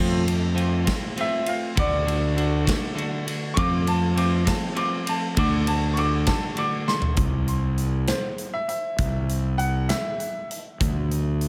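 This carefree, jangly indie rock clip, cut from a longer piece, rolls along at 66 BPM in a lilting 6/8, with a brilliant, woody upright piano taking a solo melody through tape echo over F and D chords. A crunchy, double-tracked overdriven guitar riff joins a growly, fuzzed-out fingered bass that sits up front, while a big-room acoustic drum kit with a tight kick and bright cymbals drives the groove up front as well. A drum fill at 6.9 seconds leads into a new section on C at 7.2 seconds, where the guitar stops and the piano, bass and drums carry on in a roomy studio reverb.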